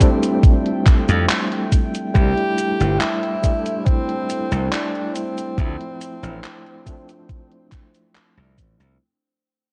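Vaporwave at a dreamy, woozy 70 BPM, this short fade-out drifts through Fmaj9, C6 and Dm7 as a close-miked tenor saxophone sings a soft-edged, vibrato-laden jazz melody through tape echo. Beneath it, a barky, gritty tine electric piano pulses with fast tremolo, subtle chorus and analog delay through a combo amp, while a very quiet, warbling, detuned pad adds nostalgic lo-fi haze. An up-front thumpy electronic kick and a gated 80s drum machine with cabasa, handclaps and hi-hat carry the beat, joined at 1.1 s by a bright, punchy slap bass, all wrapped in digital ambience and cassette tape character.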